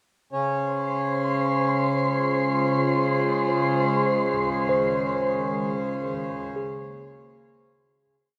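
Floating in free time, this short, whole ambient piece feels weightless and serene, drifting on a huge, wet reverb that lingers around the sound. A hand-pumped harmonium opens at 0.3 seconds with a reedy, nasal drone that sits up front, its tone dark and breathing. A warbling, detuned tape-like pad joins at 1.7 seconds, holding slowly shifting chords with chorus, phaser and its own reverb, giving a nostalgic, lo-fi haze. Above it, a wind-like tuned noise texture, present since 0.7 seconds, carries an airy, breathy held high note through its own reverb. From 4.7 seconds a clean, mellow tine electric piano scatters a few arpeggiated notes as the harmony moves from Dbmaj7 through Ab6 to Gbadd9.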